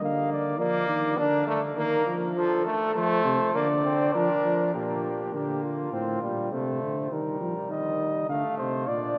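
Contemplative and solemn, this brief passage cut from a longer imitative canzona for brass ensemble moves at 102 BPM in a straight 4/4. A mellow cornet carries the melody between F4 and F5 from start to finish, its light vibrato and smooth top giving the line a gentle, rounded voice. Beneath it, a bright trombone supplies accompaniment from F3 to D4, sounding distant and roomy in the hall yet also up front, while a mellow bass trombone anchors the bass between A2 and F3 with its own light vibrato and smooth top. The harmony opens on Bb/D, moves to F and returns to Bb/D before a second section at 4.7 seconds passes through Gm/Bb, F/A and Eb, settling on Dm. A wet cathedral reverb with a 6.9-second decay surrounds the ensemble, lending the classical playing a spacious, devotional glow.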